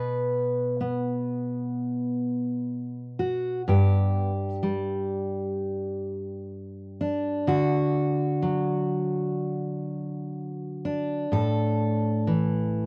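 Intimate and melancholic, this 12.9-second excerpt of solo folk fingerstyle features a lone fingerpicked steel-string dreadnought guitar in B minor at 63 BPM, dark, full-bodied and up front across its G2 to B4 range, moving through B5, G5, D and A5 chords in a dry, close 1970s-style studio sound touched with light reverb.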